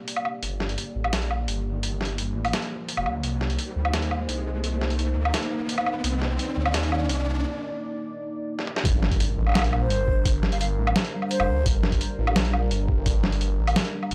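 A dry, gritty hardware sound with light digital ambience frames this short cut from a longer half-time drum and bass piece in G minor, running at 171 BPM with a spacious, heavy mood. A dark analog pad holds deep, moody sustained chords from the start, its detuned sawtooth tone treated with chorus and sidechain pumping, while an electronic riser climbs through most of the build-up over a pitched-down, sampler-style boom bap kit of hi-hat, medium-tuned snare, toms and woodblock, all tape-colored and placed up front. A swirling, thick detuned saw bass enters at 0.4 seconds, saturated and phased, as the harmony moves from Gm to Cm7. After a brief break and a drum fill, the drop lands at 8.8 seconds with an impact and a thumpy, compressed electronic kick. A breathy, hollow silver flute with vibrato and analog delay then sings a short close-miked phrase between C5 and F5 before dropping out.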